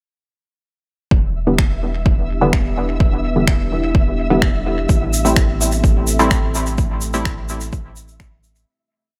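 An overdriven, layered electronic kick drives this short dub techno piece from 1.1 seconds, sitting up front in a steady four-on-the-floor pulse at 127 BPM in E minor, with a cavernous, hazy mood. Beneath it a soft, round sub bass holds sustained roots, tube-saturated and pumping with the sidechain, while sparse, muted chord stabs built from detuned sawtooth filter plucks move one shape in parallel, coloured by chorus, phaser and dub echo. A deep, full-bodied pad with a slow attack enters at 2.0 seconds to hold dark sustained chords, moving from Em7 to Am7, and a flickering, grainy granular texture holds a single high note behind it. Electronic finger snaps with dub echo mark the hats and backbeat, and a bright, vintage tube shaker in hand-played sixteenths joins at 4.9 seconds. The mix itself is dry, and the whole groove fades out from 6.2 seconds to its close.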